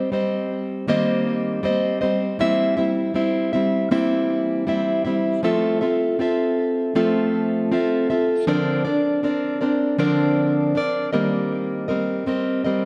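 A fingerpicked, plugged-in steel-string acoustic guitar plays alone for the full 12.9 seconds of this tender, emotional pop fragment in F major, moving at 79 BPM in a straight 4/4 and tuned to A4 = 439 Hz. The full-bodied jumbo tone sits up front, touched by tape echo and set in a wet recital-hall reverb. Its chords pass from Eb6 through C7/E, Fmaj7 and Bbadd9 before returning to Eb6 at 11.1 seconds.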